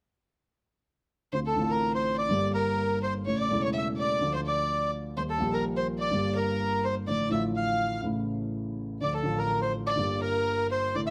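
At 1.3 seconds a reedy bandoneon enters up front with the melody of this tense, melancholic tango, while a single bowed violin, dark and earthy with light vibrato, carries a smooth second line alongside it and a concert grand piano accompanies with deep bass. The rubato feel lets the minor-key harmony move from Dm7 through Eb and back to Gm, and all three parts play together until 11.1 seconds. Close, detailed microphones and light reverb give this passage, cut from a longer piece, an intimate, present sound.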